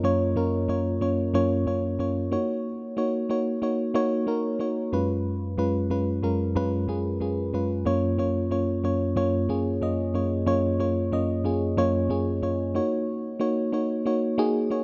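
A warbling, vintage FM electric piano plays alone, up front and dark-toned with a noise layer and fast, decaying notes, across this romantic, nostalgic pop fragment at 92 BPM in F# major, where light reverb surrounds chords moving from A#m/F# to F#6 and C#7/F# over 14.8 seconds.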